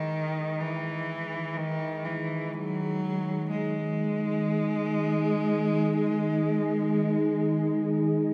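Floating in free time, this short fragment of dark ambient drone, tuned to A4 = 443 Hz, feels cavernous and ominous across its 8.3 seconds. A sweeping, resonant synth pad fades in from the very start, holding a G#5 chord with a slow attack, long release and a gradual filter swell, its detuned sawtooth and sine layers thickened by chorus. Alongside it, a single bowed cello carries the melody between D#3 and G#3, its warm, nasal, boxy tone smooth and even, with vibrato and a trail of tape echo. Both parts sit up front. The whole mix is steeped in a wet echo-chamber reverb with a long decay.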